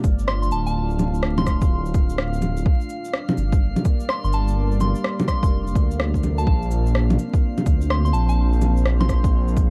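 Ghostly and melancholic, this future garage excerpt drifts over a swung 4/4 groove, moving through Dm, Gm and Bbadd9. A deep, moody ambient pad holds sustained chords with a slow attack, a vintage warble from its chorus and built-in reverb, pumping with sidechain compression. Beneath it, a menacing detuned saw bass swells with saturated grit and also pumps. A punchy electronic kick sits up front alongside layered cabasa, shaker, rim click and bongos, all with the boxy character of a small room. A soft, pure FM bell carries the melody from 0.3 to 9.3 seconds, its mellow tones decaying into analog delay, while a faint glassy texture of drifting overtones hovers high above and vinyl crackle runs throughout.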